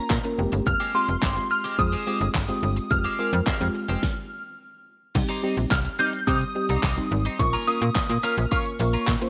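Dance-pop with a bittersweet yet confident mood, this short cut moves in a straight 4/4 feel over a light reverb. A bright, shimmering FM bell with a dreamy, warbling halo carries the high melody, thickened by ensemble chorus and a slapback echo. Beneath it, a soft, round, dark pluck supplies the chords with a sidechain pump, while a clean, compressed twelve-string electric guitar picks a riff through analog chorus. A snappy, metallic FM slap bass and a layered electronic pop kit sit up front, with a punchy kick, a fat snare, handclaps, hi-hat and crash. The band breaks off in a stop from 4.0 to 5.2 seconds, and the second section begins on a minor chord, with a jingly acoustic tambourine barely audible from 5.7 seconds.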